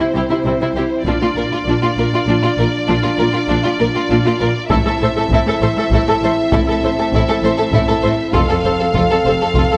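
Dark and epic, this cinematic orchestral film score moves at 66 BPM in a straight 6/8, set in A phrygian and built as a build-up across its 9.8 seconds, cut from a longer piece. Bowed violins carry the melody between C5 and F5 with lush vibrato, while a second violin line with a soft, expressive attack and a smooth viola accompaniment fill the middle of the string body. A dark, tight French horn section holds sustained chords beneath, and the double basses join a rich cello section, their soft attack giving the bass line a rounded, velvety depth. The taiko ensemble enters at 1.1 seconds, struck with heavy sticks and sounding compressed and saturated. The harmony passes from C to Bb, then Am at 4.7 seconds and F at 8.3 seconds, all within a moderate scoring stage reverb that lends the orchestra a spacious bloom.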